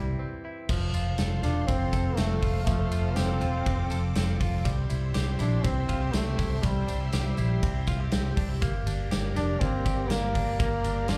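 This excerpt of jangly indie pop opens with a clear, punchy solo trombone carrying the melody with vibrato and a smooth top, joined by twangy, scooped arpeggios from a bright, compressed clean electric guitar and a round, foam-muted vintage bass sitting up front. Both the trombone and guitar are dressed in plate reverb, slapback echo and digital delay. After a brief break from 0.2 to 0.7 seconds, a big rock drum kit with a punchy kick, medium-tuned snare and bright cymbals drives a straight 4/4 at 121 BPM. A jingly tambourine and a lush, sawtooth string machine with slow-attack sustained chords and ensemble chorus enter at the same moment, both tucked in the background. The harmony in F major moves from C to F, back to C at 4.7 seconds and on to Gm, giving the passage a youthful, nostalgic glow. The whole thing sounds like a live gig heard through a club PA, with a light wash of room reverb.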